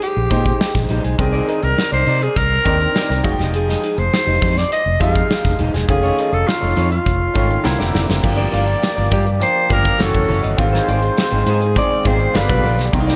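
Cut from a longer piece and bathed in a lush hall reverb with a big arena sound, this slick, bittersweet 1980s jazz-funk pop passage sets a raspy, growling alto saxophone melody with slapback echo over a brilliant grand piano with chorus, a slightly broken-up electric guitar riff tucked in the background, a dark, round fretless bass and a punchy modern drum kit whose fill at 7.7 seconds ushers in a mellow, distant horn section and a jingly tambourine at 8.2 seconds.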